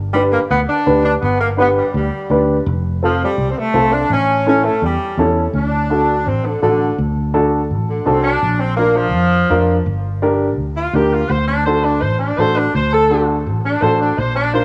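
A straight, danceable cumbia groove in 4/4 is anchored by a round, foam-muted fingered electric bass that sits dark and up front from the opening moment. A smooth-topped saxophone section with light vibrato carries the jazz-inflected melody, joined by an intimate, woody upright piano whose audible action noise and cassette-tape colour fill in the accompaniment, before the horns take a fiery solo at 5.5 seconds. The cut, taken from a longer piece, has the small-room feel of a home cassette recording, bathed in a moderate spring reverb.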